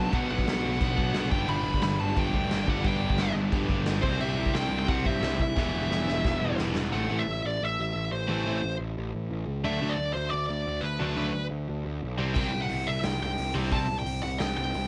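A lightly reverberant, raw and angry punk rock excerpt, where a dark, smooth overdriven lead guitar carries the melody up front over a growly fuzz bass and two bright picked riff guitars in the background, one distorted and compressed and the other a cranked overdriven stack, while a punchy garage drum kit in a stone room plays a fill at 5.6 s before the half-time section, drops out after 6.8 s, and returns at 12.4 s.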